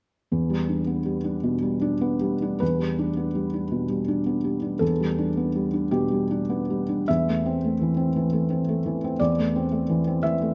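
Swaying in a slow 6/8 at 49-58 BPM counted in dotted quarters, the rhythm moves with a loose, rubato feel that lets each phrase breathe. This short fragment of a longer neoclassical minimalist piano piece sits in E minor and carries a melancholic, reflective mood. A felt-muted upright piano plays alone from 0.3 s, ranging from E2 to E5, its tone soft and mellow with an intimate closeness and the audible noise of its action. The harmony rests on Em7 before shifting to Am/E at 7.1 s, within a second passage that begins at 2.6 s and carries on to the end of the excerpt at 10.5 s. Close, detailed microphones place the piano up front, while a moderate recital hall reverb adds a gentle sense of space around it.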